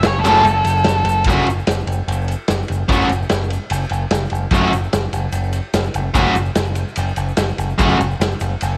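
Garage rock with a gritty, menacing mood, cut from a longer piece, opening with a brief dark octave-fuzz lead guitar solo that stops at 1.2 seconds before the music settles onto a bare power chord. A biting, double-tracked overdriven guitar riff sits up front from 0.2 seconds alongside a growling picked bass, while a vintage acoustic kit with punchy kick, dark cymbals and a pumping small-room sound carries sampler grit and a rolled-off top. A grainy egg shaker ticks faintly in the background under light reverb.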